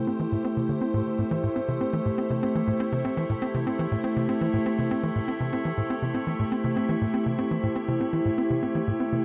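A wet plate reverb with a 2.8-second tail surrounds this short excerpt of ambient, sequencer-driven space music, giving it a mysterious, hypnotic air. At 121 BPM in a straight 4/4 and in A minor, the whole 9.2 seconds rests on a single Am7 chord. An evolving wavetable pad holds sustained chords from A3 to C5, its detuned triangle tone morphing with a slow attack and long release, bright and up front under chorus and its own built-in reverb. Beneath it, a tight sequencer bass plays a punchy, driving riff between A2 and C4, its sawtooth and square-wave filter pluck striking fast and decaying into a mellow tone, echoed by delay. Both parts sound from the first moment to the last, so the passage feels like a single suspended moment cut from a longer journey.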